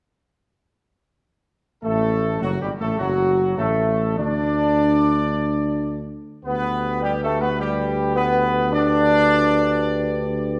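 In a steady, straight 4/4 at 106 BPM, this solemn, majestic ceremonial fanfare in D major unfolds as a short passage cut from a longer classical piece, with all four brass parts sounding together from 1.8 to 10.6 seconds. A clear trumpet section carries the melody with a light vibrato. Beneath it, a dark French horn section holds sustained chords from a distant, roomy place in the background, while a warm, vintage-toned trombone section sits up front with tight sustained chords. A mellow tuba anchors the bass, its soft attack, smooth top and light vibrato giving the low end a rounded presence. The harmony rests on D before shifting to G over D at 6.5 seconds, and a wet recital hall reverb with a 1.4-second decay surrounds the ensemble in a resonant, ceremonial space.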